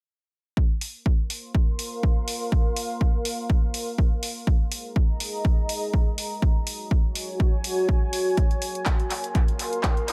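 A punchy electronic kick sets a 4/4 pulse at 123 BPM from 0.6 seconds, with a light 16th-note swing giving the groove an easy lilt. Just after, an analog drum machine adds handclaps and hi-hat with a tape-warm edge and a dub echo trailing behind them, both drum parts sitting up front in the mix. From 1.4 seconds a deep, dark ambient pad spreads out beneath them, its detuned sawtooth unison and sub octave bloomed through chorus and reverb, swelling slowly on each attack and breathing with a sidechain pump. This soulful, bittersweet piano house fragment in B-flat minor moves through Bbsus2, Ab5, Gb and Bbm9, the moody pad coloring each change. An echo-heavy digital ambience hangs over the whole passage, giving it a spacious feel.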